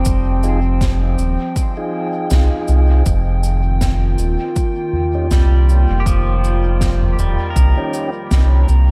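Ambient dub with a hazy, deep mood, this short excerpt rests on a slow, lightly swung groove that moves from Fm7 to Eb7. A round analog bass sits up front, dark and sustained, beneath an overdriven electronic kick that adds a layered, produced weight. A warbling, nostalgic pad holds sustained chords through chorus and its own reverb, its lo-fi, detuned tone blooming with a slow attack and long release. Clean electric pedal steel guitar plays arpeggios with fingerpicked slide and volume swells, trailing off into tape echo. A soft-mallet acoustic kit of cabasa, medium-tuned snare and toms sounds natural and hall-like through dub echo, while a mellow tonewheel organ adds lightly overdriven stabs spun by a fast rotary speaker and dub echo. Studio ambience fills the space around the parts.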